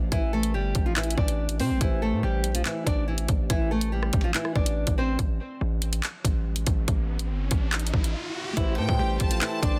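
Menacing and dark, this short cut from a longer drill track moves in a half-time feel over a brooding Am7 chord. A distorted 808-style bass sits up front, heavy and saturated with a fast attack and a noise layer, while the electronic drill kit pushes a hard-clipped kick, bright hi-hats, handclaps and rim clicks. A fingerpicked nylon-string guitar carries the melody with fresh strings and tape echo, backed in the background by a mellow, clean tine electric piano. Both the guitar and piano drop away at 5.2 seconds, leaving bass and drums under an electronic riser that runs into a brief break before 8.6 seconds. When the harmony returns, the guitar and electric piano come back alongside ethereal glass harmonica chords and a lush, bowed violin section with smooth vibrato, all inside a dense, heavily limited modern master with small room ambience.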